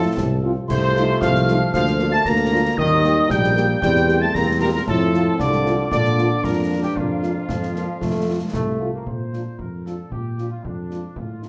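A dark tuba sits up front in the bass of this spirited, rousing military-style march for wind band, a passage cut from a longer piece in Bb major at 115 BPM in a straight 2/4. Above it, a mellow, tight trumpet section with light vibrato carries the melody. A distant, roomy euphonium and an airy, crisp piccolo add second lines until 8.8 s, a clear, close-miked trombone section holds chords in the background until 9.1 s, and a smooth-topped French horn section accompanies from 0.4 s, while concert snare, bass drum and dark clash cymbals play in a live room and a wet large studio reverb fills the sound.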